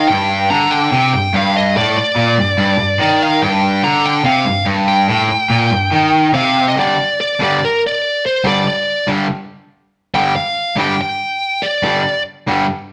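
A straight 4/4 pulse at 143 BPM drives this heavy, aggressive rock passage in G minor, tuned a touch low at A4 = 438 Hz and cut from a longer piece, with a bright, double-tracked cranked stack guitar playing a low overdriven riff that opens on a G5 chord while a darker, smooth overdriven lead guitar carries the melody above it. Both picked electric guitars sit up front, the lead falling silent at 12.2 seconds just before the riff ends at 12.6 seconds, after the music moves into a new section at 6.8 seconds. The rough rehearsal-room sound is coloured by a moderate stone-room reverb.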